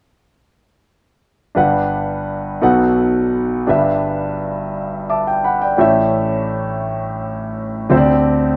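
Hopeful and soulful, this short gospel passage in a straight 6/8 features a lone concert grand piano, clear and up front with a deep bass and long sustain, playing from 1.5 to 8.6 seconds. The chords move from Gmaj7 through B7 and Em7/G to A7, settling on D7sus4, with a piano fill between 4.7 and 5.8 seconds. A moderate studio reverb gives the natural, live-in-the-room sound a gentle sense of space.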